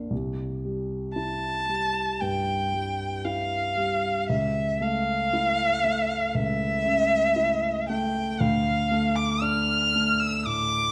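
Set in a moderate recital hall reverb with a dark production, this tender romantic classical excerpt for violin and grand piano moves at a rubato 58 BPM in 4/4, as the mellow, smooth piano plays a low, vintage-toned accompaniment through C, A/C# and D5 while a single rich, expressive violin enters at 1.1 seconds with a high bowed melody full of vibrato and portamento.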